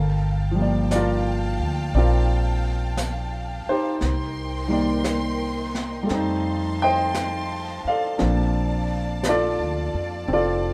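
A slow, romantic jazz ballad in Bb major opens with a baby grand piano, a bowed string section and an upright bass sounding together, the piano sitting up front with a warm, natural tone as it accompanies. The strings hold lush, sustained chords with soft attacks and expressive vibrato, placed close yet quieter in the balance. The pizzicato upright bass, also up front, has a woody character. At 0.9 seconds a brushed drum kit joins in the background, its dark, smooth snare and hi-hat softened by a rolled-off top. At 58 BPM with an 8th-note swing, the harmony moves from Gm9 through Cm7 and F7 to settle on Bbmaj7 at 8.2 seconds. Light reverb gives this intimate, short cut from a longer piece a gentle sense of space.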